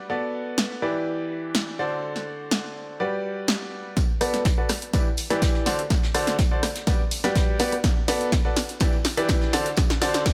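Energetic and soulful, this piano house excerpt opens on a bright upright piano riff with a woody, polished tone and long sustain, sitting up front with sidechain pumping, a low-pass filter and tape echo. A punchy analog drum machine joins at 0.6 seconds with hi-hat, rim click and snare, its tape-tinged sound carrying the character of a small room. At 4.0 seconds the build-up begins: an electronic kick drum arrives as the loudest part in the mix, while a vintage brush drum kit adds hi-hat, snare and tambourine far in the background, its top rolled off and its hats and percussion pumping. A drum fill runs through this second section as a filter sweep moves over the piano. Seventh chords cycling through Bm7, Em7, D7 and Gmaj7 give the loop its soulful colour, and light studio reverb surrounds the mix.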